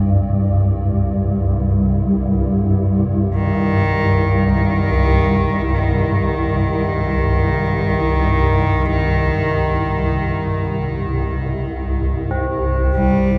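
A slow, straight pulse in four barely registers beneath this ominous, unsettling dark ambient excerpt, which rests on a single minor chord throughout. From 0.0 seconds a swarming, detuned drone of unison sine tones sits low and up front, its slow attack, long sustain and long release giving it a tense, evolving, granular body inside its own built-in reverb. At 3.3 seconds a single close, bowed cello enters with a reedy, gut-string melody in period style, its tone carried further by shimmer reverb and delay. Near the end, at 12.3 seconds, tubular bells struck with a rawhide hammer add solemn, metallic arpeggios that ring out on one pitch. The whole sits in a huge, wet reverberant space with a dark production that keeps the mood heavy and unresolved.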